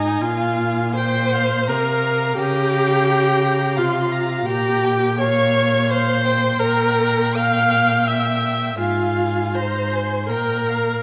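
Heard through a moderate concert-hall reverb, this melancholic, elegiac passage from a slow romantic string quartet movement sways in 3/4 with rubato: a smooth, distant violin carries the melody in the background, a second violin adds a close, expressive line with soft attacks and portamento, an up-front viola supplies warm, gliding accompaniment, and a rich, evenly bowed cello anchors the bass, all four players using vibrato.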